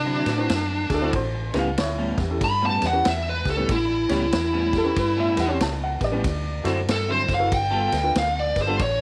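Soulful and laid-back, this brief electric blues shuffle moves through D9, A9 and G9 chords, with a smooth, overdriven lead guitar up front carrying the melody over a round, foam-muted fingered bass. A clean, picked electric guitar with ensemble chorus plays the riff, a mellow, boxy baby grand piano adds accompaniment, and a vintage kit of tight kick, medium-tuned snare and dark ride cymbal holds the swung feel. From 0.9 to 6.7 seconds a woody, slightly detuned upright piano adds a second line, while light reverb and small room ambience surround the ensemble.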